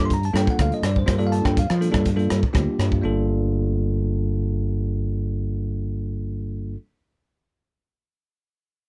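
A bell-like, bright tine electric piano opens on a Gm9 chord over a round, punchy fretless bass in this driving, nocturnal electric jazz fusion fragment in G minor at 123 BPM, with a crisp acoustic drum kit of hi-hat, tight kick and rim click in a small, pumping room playing only until 3.0 seconds, leaving piano and bass up front and dry.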